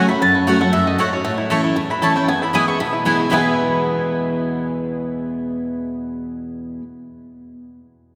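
Set in a cavernous church acoustic with a long, wet reverb tail, this joyful, lively bluegrass excerpt runs at a brisk straight four. A bright, up-front steel-string guitar with audible finger squeak carries the picked accompaniment, while a woody, double-strung mandolin sings the high melody alongside a twangy, percussive banjo sitting in the background. A second mandolin adds stabs over an F#m, A and E progression. The melody mandolin and banjo drop out just after 6.3 and 6.4 seconds, and the guitar and stabs carry on until 6.8 seconds.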